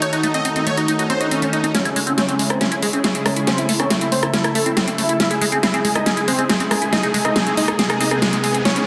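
Euphoric yet bittersweet, this uplifting trance excerpt at 139 BPM in C# harmonic minor features bright, detuned supersaw chords carrying the melody through a low-pass filter and dub echo, with a filter sweep across the build-up from 1.7 s, over a thick, slow-attack unison pad with chorus, a squelchy, resonant acid bass playing arpeggios through phaser and dub echo, an up-front big-room drum kit with a huge snare, metallic hi-hats and rim click that carries a drum fill through the build-up, and a very quiet electronic swell and riser entering at 1.1 s, set in a lush hall reverb and a dense, heavily limited modern master.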